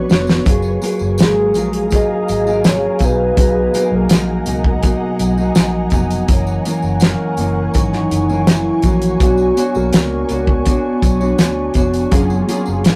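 Indie bedroom pop at 82 BPM in F# major, nostalgic and hazy, cut from a longer piece, opening with a drum fill from a damped, dry 70s kit with a fat snare and tight kick sitting up front, and a jingly tambourine in the background. A dark, clean, compressed electric guitar with vibrato and a round, foam-muted fingered bass carry the accompaniment under an ethereal, airy pad of detuned sustained chords, while sawtooth analog keys with chorus, phaser and a warbling vintage character appear only briefly at the start and return at 12.1 s. A soft octave-layered triangle synth lead with chorus and vibrato enters at 1.2 s over chords moving from F#maj9 through Bmaj7, F#7 and Bmadd9, all in a small, rough rehearsal room with a warmly saturated sound.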